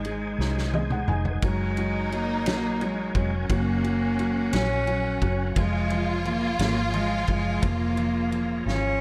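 A tender, romantic six-eight pop ballad in Db major at a slow 58 BPM opens on a rich, bowed cello melody with vibrato and tape echo over a soft felt-muted upright piano with audible action noise, a thick, lightly overdriven tonewheel organ with key click and fast rotary speaker, a round, foam-muted electric bass up front, and a distant, roomy drum kit with dark cymbals, with drum and piano fills from 0.4 to 1.4 seconds before a lush studio violin section enters at 1.4 seconds, all in a small, lightly reverberant room in this short cut from a longer piece.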